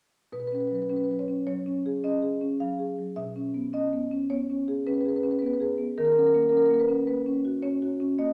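Set in a five-beat metre and played with a free, rubato feel, this short contemporary classical piece for solo marimba has a playful, flowing mood. The marimba, struck with soft mallets on padauk bars, sounds woody, round and mellow, sitting up front in a boxy small room. It plays alone from 0.3 to 8.3 seconds, ranging from B2 up to E#5, tuned to A4 = 437 Hz. The harmony moves from B69 to C#m7/B at 3.2 seconds and then to D#m7 at 6.0 seconds. A wet stone-room reverb adds a brief, resonant tail around the instrument, and the passage is lifted from a longer work.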